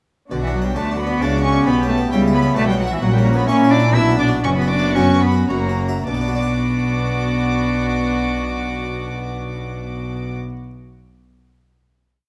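A dark, reverberant recital-hall sound frames this stormy, driving baroque-style concerto movement in 3/4, where a gut-strung violin section carries the reedy melody above a second violin line and a shadowy, distant viola section's sustained inner chords, a lone nasal cello doubles the tune at the octave, a close, dry harpsichord spins round plucked figuration, and a walking cello section with a rich double bass section anchors the bass, the ritornello slowing from 2.3 seconds before it settles onto a final chord at 6.1 seconds.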